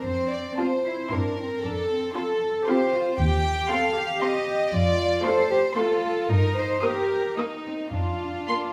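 Up front, a violin section carries a warm, intimate second line with light vibrato, soft attack and sul tasto bowing, beside a dark, woody double bass section that is also close and forward. This is a quick, cheerful and spirited classical-period movement for string orchestra in F major, moving at 114 BPM in 3/4 with a rubato feel. A close cello section with a smooth top holds the bass, and at 0.6 s a viola section enters with accompaniment while a distant, dark violin section adds a lush, vibrato-rich melody in the background, all within a recital hall reverb.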